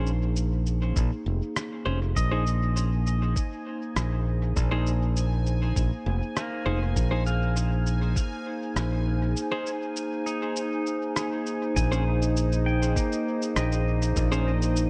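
A straight 4/4 pulse at 100 BPM anchors this spacious, hazy ambient dub excerpt: a tape-softened electronic shaker and rim click carrying dub echo start at 0.1 s and are joined at 1.0 s by a muffled, pitched-down, sampler-style kick, while an up-front, bright fingered electric bass holds the low end beneath a warbling, detuned lo-fi pad on Bb7sus2 and Ab chords, clean picked electric guitar stabs trail dub echo, slide pedal steel guitar arpeggios arrive at 2.2 s with a faint bubbling stepped-filter texture in the background, and a break opens at 9.4 s, all set in light digital ambience.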